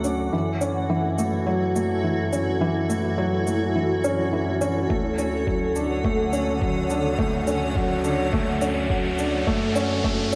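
A dreamy mix soaked in a plate reverb with a long 3.3-second tail gives this cut from a longer piece of piano and strings electronica a hypnotic, melancholic haze. At 105 BPM in 4/4 with a straight feel in F# minor, it is one continuous build-up, moving from F#m7 to Dmaj7 at 4.9 seconds and back to F#m7 near the end. Up front, a felt-muted upright piano plays a soft, intimate riff through analog delay, its thick felt and audible action noise keeping it dark and close. Beside it, a granular cloud pad holds bright, blurred, detuned chords that evolve under their own built-in reverb, while a round sine sub bass sits deep below with sidechain pumping. An overdriven, high-passed electronic shaker ticks faintly throughout, a muffled, thumpy, pitched-down kick enters at 4.9 seconds, and an electronic riser climbs in from 6.6 seconds to the end.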